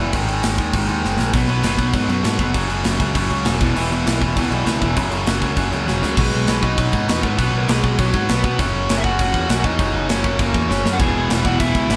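A distorted electric guitar riff and a growly, bright picked bass open this energetic, rebellious punk rock excerpt in B major at 199 BPM, with a tight metal drum kit of crash, kick and medium-tuned snare arriving at 0.1 seconds, up front, airy and polished, with bright cymbals. After a drum fill, a sludgy overdriven second guitar joins in the background at 1.3 seconds, thickening the riff beneath power-chord changes through B5, F#5 and E5. That second guitar drops out at 6.2 seconds as the music moves into a new section, where a dark, smooth overdriven lead guitar, entering just before at 5.9 seconds, carries a melody over chords of B, F# and E. Short drum fills mark the turns, and the sludgy guitar returns at 11.0 seconds to fill out the closing bars. The band sounds like it is playing live together in one room, with light reverb and a bright, driving edge.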